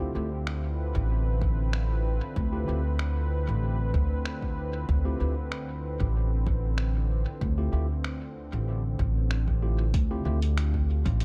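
Spacious and meditative, this ambient dub excerpt moves at 95 BPM in D dorian with a light 16th-note swing, resting on a Dm11 chord in a dry, echo-heavy mix. A smooth, detuned sawtooth pad with chorus and vintage sampler grit sustains chords beneath clean tine electric piano stabs thrown into dub echo, while a woody pizzicato upright bass sits up front. Muffled, overdriven sampler-style finger snaps and hi-hat enter at 0.5 seconds with their own dub echo, and a deep, tape-warm electronic kick joins in the background at 1.0 seconds.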